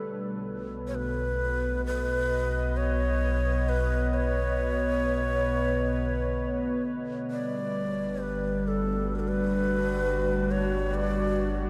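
Peaceful ambient fragment at 66 BPM, where a warbly, nostalgic tape-like pad with chorus holds Badd9 moving to Gmaj7 at 7.3 seconds over a round, deep analog bass and a very quiet, string-like bowed drone, while a breathy, bamboo-toned shakuhachi with tape echo enters at 0.9 seconds to sing its close-miked melody, all bathed in a huge, wet reverb.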